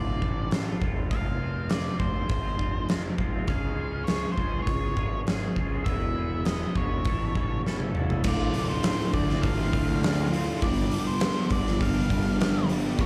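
A straight 4/4 pulse at 101 BPM drives this dark, cathartic stretch of quiet-loud alternative rock, cut from a longer piece and heard as a live club gig through the venue's PA with small-room reverb. A twangy, scooped clean guitar picks arpeggios beneath a dark octave-fuzz lead melody with slapback echo and digital delay, while a growly, up-front fuzz bass and a huge arena kit with a fat snare, punchy kick and bright cymbals push through the chords from Dm to Fm, C#, E and A7. After a drum fill at 7.6 seconds, the arpeggios stop and three overdriven guitars crash in at 8.2 seconds with a riff, settling into D dorian over Dm and G, one of them a very quiet semi-hollow and another double-tracked in the background.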